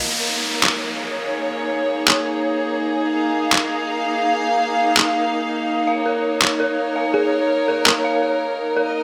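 Soaked in a wet digital room reverb, this heavy, tense half-time drum and bass excerpt opens with an intimate chamber string section holding sustained chords with light vibrato and an electronic downlifter up front, while gritty, overdriven handclaps punch in from 0.6 s, an eerie, warbling detuned synth bell plays arpeggios from 5.9 s, and a round, tine-like thumb-piano-like synth pluck adds one brief background note at 7.1 s.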